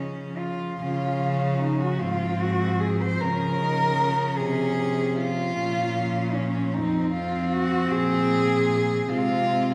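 Serene and tender, this lyrical classical fragment in a rubato 6/8 sets a dark, woody cello melody with vibrato up front, entering at 0.4 s over three soft-attack sul tasto cellos: a pure, floating second line, an intimate accompaniment and a bass with an airy bow, each bowed by a single player and carried by a recital hall's reverb heard from further back.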